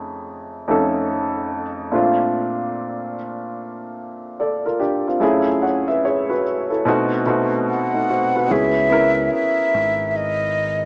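A dark, woody upright piano with audible action noise opens this hazy, melancholic swung hip hop fragment alone under a low-pass filter sweep, moving through jazzy altered and extended chords before a breathy, hollow concert flute with vibrato enters up front at 7.7 seconds and a round, amped dub-style fingered electric bass joins at 8.5 seconds, all bathed in moderate plate reverb and a small-speaker cassette tape sound.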